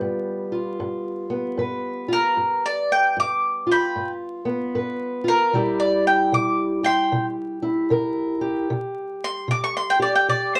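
Acoustic country blues with a laid-back, rollicking swing, this short cut from a longer piece features a bright, round mandolin carrying the melody up front as a solo throughout, its picked double strings ringing over a dark, boxy parlour-style steel-string guitar fingerpicking the accompaniment. The harmony moves from G7 to C7 at 5.5 seconds, settling on C5 near the end, all set in a small, moderately reverberant room with a dark, warm production flecked with vinyl crackle.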